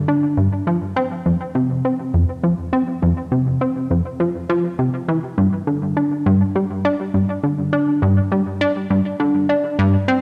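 Bathed in the wet reverb of a concert hall with a 2.1-second tail, this short cut from a longer ambient piece feels hypnotic and mysterious. A single plucky analog bass carries the whole passage as a solo voice, sounding from 0.0 to 10.2 seconds in straight 4/4 time. Its tone blends sawtooth, square and sine waves with a wave-folded edge, and a filter pluck gives each note a fast attack that then decays. The bass sits up front, punchy and a little funky, ranging from F2 up to D4. An analog delay trails its notes into the spacious hall, deepening the trance-like atmosphere.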